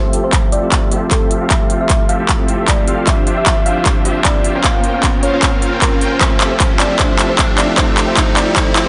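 Future bass build-up with a euphoric, lush mood and a half-time, lightly swung feel, cut from a longer piece, where huge detuned supersaw chords carry the riff under a filter sweep, while a round, warbling thumb-piano-like synth pluck, also swept, holds the melody in the background with chorus and dub echo. A bell-like tine electric piano adds clean accompaniment through digital delay, and the pumping sidechain ties these three parts to a punchy, up-front electronic kick and a crisp big-room kit of handclaps, hi-hat and woodblock playing a fill throughout. A riser enters at 3.2 seconds, and the harmony moves from Fmaj9 through Dm11 and Bbmadd9 back to Fmaj9 in a moderate digital room.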